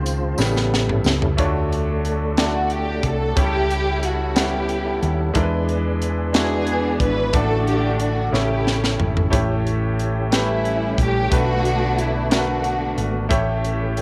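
This slow gospel excerpt in D major opens with a bright baby grand piano taking a short solo, its brilliant, long-sustaining tone set up front, while a tonewheel organ holds sustained chords in the background through a slow rotary speaker with chorus vibrato. A crisp fusion drum kit enters at 0.1 s and plays a fill from 0.4 s, its high-tuned snare and punchy kick airy and polished in a studio room, and a jingly, saturated tambourine sits behind it only until 1.4 s. The hollow-body short-scale electric bass, fingered, gives a dark, round, amped low end throughout. From 2.4 s a lush symphonic string section carries the bowed melody with soft attack and expressive vibrato, close and up front, over chords such as Dmaj7, A7/C#, E7 and Bm7. Set at 60 BPM in 6/8 with light reverb and small room ambience, the piece feels uplifting and soulful, with a second drum fill at 8.3 s.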